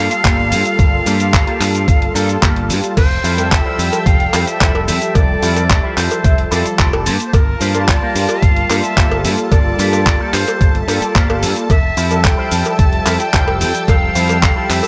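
Sunny and groovy, this nu-disco excerpt moves at 110 BPM in a straight 4/4 in F major, cycling between Gm9 and Fmaj9 chords. A breathy, reedy jazz flute carries the melody with vibrato and tongued notes over a tape echo, while round, dark synth brass built from detuned sawtooth tones with a filter sweep supplies chorused, sidechain-pumped accompaniment. Behind them, a lush, thick unison pad holds slow-attack chords through chorus and phaser, and a twangy envelope-filtered electric guitar plays a background riff with analog chorus and 12-bit sampler grit. A growly picked electric bass sits beneath, pumping with the sidechain, as a dusty, gritty sampler-style soul kit of cabasa, crash, handclaps and hi-hat, re-recorded in a large room, pairs with a thumpy, up-front electronic kick. A close, dry cowbell joins at 3.0 seconds, a clean electric guitar fill appears from 5.7 to 7.3 seconds, and the overall sound stays dry with little reverb.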